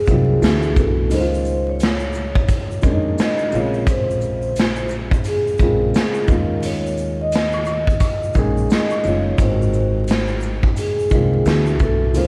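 A gritty, saturated garage drum kit with a punchy kick sits up front in this mellow, cosy lo-fi hip hop excerpt, swinging under a ringing soft-mallet vibraphone melody with slow motor vibrato and plate reverb, a dark, boxy upright piano run through cassette tape, a growly pizzicato upright bass, and maracas and woodblock tucked in the background beneath vinyl crackle.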